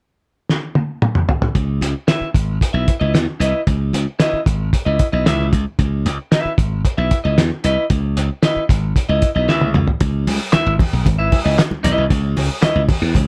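A cloth-damped, thuddy drum kit leads this driving, cool funk excerpt, opening with a fill at 0.5 seconds. Its muffled, gritty, saturated sound carries a fat snare, tight kick, hi-hat, toms and handclaps, with a rolled-off top and a small-room, lo-fi character. A glassy slap bass arrives at 1.6 seconds, growly and punchy, sitting up front as the harmony settles on C#m9. A clean, picked electric guitar joins shortly after with a twangy, bright accompaniment. A second drum fill leads into the final section, where thick-skinned congas enter at 10.0 seconds in the background, all within a dark production with little reverb.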